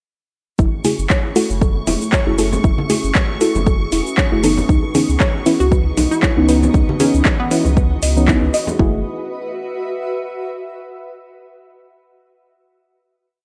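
At 0.6 s a deep, warm house groove starts with an overdriven four-on-the-floor kick and a drum kit of claps, metallic hats and shaker, along with a round sine sub bass in a dotted rhythm; at 0.8 s ringing acoustic congas and dark, nasal chord stabs join, the stabs moving through a filter sweep with chorus and analog delay. Underneath sit a very quiet, flute-like hollow pad, a gentle arpeggiated pluck in the background, a shimmering string-machine violin note held high, and a cloudy granular pad that drifts in shortly after the start and shifts its chords slowly. A bouncy square-wave pluck adds short phrases from 5.6 s, and the gritty, lightly reverberant piece closes on a final chord from 8.8 s.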